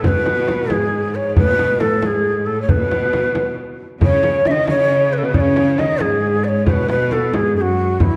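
A festive Persian modal ensemble opens at once: a breathy end-blown ney carries the melody between E4 and E5 over a bowed cello section, a tombak and a frame drum, all starting together at 0.0 seconds. The music moves in a straight 6/8 at 90 beats per minute, counted in dotted quarters. The reed-cane ney sits up front with tongued notes, vibrato and an unsteady quality. The studio cello section plays a lush, intense second line from E2 to D#3, bright in tone and rich with vibrato. Beneath them, the tombak stays tight, close and dry in the background under soft hands, while the frame drum adds a deep, large, compressed and saturated pulse. A wet recital-hall reverb and a dark, warm production surround the ensemble in this 8.2-second fragment of a longer piece.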